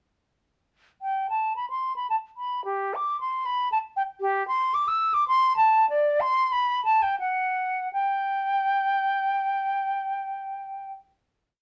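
A silver concert flute enters alone at 1.0 seconds, playing a radiant, serene baroque-style fantasia in a flexible, rubato three-beat metre, its melody leaping down to bass notes and soaring up to high E. The tone is airy and metallic with a soft attack and vibrato, heard up front in a moderate studio ambience. The playing slows from 3.5 to 7.9 seconds before settling on a final note that rings into the room until the piece ends.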